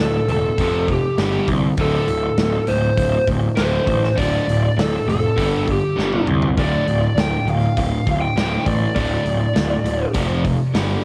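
Up front, a dark, overdriven lead guitar through a small cranked amp carries the melody with tape grain and analog delay, beside a growly fuzz bass, while a bright overdriven riff guitar sits in the background, a sludgy distorted guitar murmurs very quietly beneath, and a big natural-sounding rock kit with a tight kick enters at 0.3 seconds and fills at 6.0 seconds in this heavy, driving hard rock excerpt in D minor at 100 BPM, cut from a longer piece and captured as a cassette home recording with light small-room reverb.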